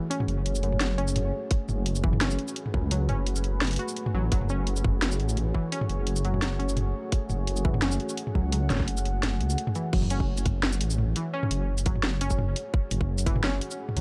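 The mix is dark and close, with little reverb, in this heavy, cinematic clip of half-time drum and bass at 171 BPM in F# minor, resting on an F#madd9 chord with a slight swing on the 16ths. A deep, moody ambient pad holds sustained chords with a slow attack, long release, chorus and its own reverb, roughened by vintage 12-bit sampler grit and pumping against the sidechain. Beside it, a warbly, dusty pluck plays lo-fi arpeggios that evolve through a wave-folded, filter-swept tone, mellow and decaying, trailed by dub echo. A rumbling, detuned saw bass enters at 0.3 s, beating and sustained and sitting up front. The produced drum kit brings a cracking snare, hi-hat, shaker, toms and crash, and a tight, layered electronic kick joins at 1.5 s as the drop carries through and starts afresh at 9.9 s.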